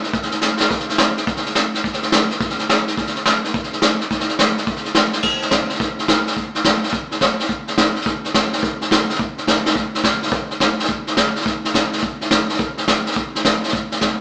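A fast, swung rock groove at 212 BPM in 4/4 drives this short cut from a longer piece, its eighth notes leaning into a moderate lilt. The only part is a vintage drum kit played with brushes, sitting up front with crash cymbal, hi-hat, snare and kick. Its cymbals are dark and the top end rolled off, while the medium-tuned snare and punchy kick give the groove a retro, rowdy bite. Drum fills break in at 0.4, 9.6 and 14.0 seconds, and the performance moves into a new section partway through. A moderate stone-room reverb and the feel of a band playing live in one room, heard through a small speaker, give the sound a boxy, lo-fi character.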